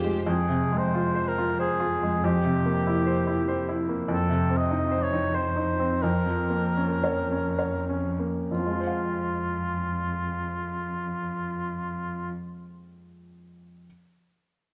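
A brilliant, up-front grand piano carries the melody in this brooding, tragic classical excerpt in F minor, a rubato 3/4 between 63 and 99 BPM that slows from 3.2 to 8.5 seconds. Beneath it a smooth, bowed cello section holds the bass while a mellow oboe with light vibrato sings a second line close to the front, both stopping at 12.3 seconds and leaving the piano alone. A recital hall reverb lends the performance a wet ambience.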